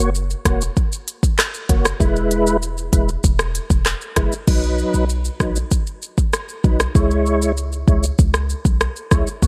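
A straight 4/4 dancehall groove at 97 BPM drives this short, tough and bouncy passage cut from a longer piece in C# dorian. The afro-pop drum kit sits up front with an electronic, produced sound, pairing a deep kick and crisp hi-hats with handclaps, rim clicks, shaker and crash cymbal. Beneath it, a warm 808-style bass plays throughout in a low register, its boomy sine tone carrying a noise layer, a fast attack and a mellow decay. A clear, lightly overdriven tonewheel organ holds the accompaniment, also up front, with audible key click, chorus vibrato and a slow rotary speaker. The harmony moves from F# to E, then shifts at 4.5 seconds into a second passage built on B and C#m. Light reverb and digital ambience frame a bright 1980s-style digital production.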